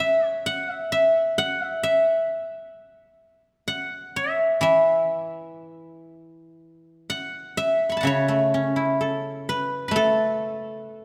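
A lone guzheng opens this short fragment of a Chinese traditional solo, its fingerpicked strings sounding bright and silvery and placed close up front. The mood is serene and elegant, and the playing moves with a free, rubato feel over an unhurried four-beat metre. The instrument covers a span from C#3 up to C#6, its ringing notes carried into a moderate concert hall reverb that gives each phrase a graceful afterglow. At 6.1 seconds the music passes from its opening phrase into a second section, which continues until the fragment ends at 11.0 seconds.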